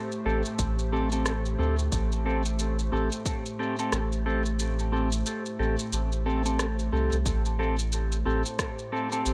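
Ambient dub at 90 BPM in A minor with a swung, spacious and meditative feel, built on an Am7 chord, where an airy, breathy pad with chorus holds sustained chords, a round, soft sub bass with tube saturation sits up front, a dark, clean electric guitar with phaser and dub echo plays stabs, an electronic shaker and rim click carry dub echo, and an overdriven deep electronic kick drops out from 4.6 to 7.3 seconds before the passage moves into a new section, all in light reverb.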